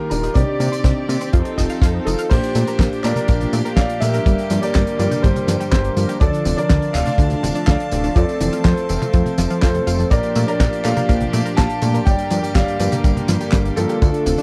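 A straight groove from a tight, dry kick drum and a damped 1970s kit with a fat snare, dark cymbals, handclaps and tambourine drives this playful, sunny italo disco excerpt, where a fat, detuned sawtooth bass sits low, a chorused analog pluck arpeggio with tape echo and mellow, brassy synth stabs glow in the background, a distant, earthy chamber string section holds bowed chords, and an intimate concert grand piano with audible action noise and tape echo carries the melody over a Bb6, Gm, Dm, F progression, all in a close, lightly reverberant 1970s-style studio sound after a brief filter-swept opening that ends at 2.3 seconds.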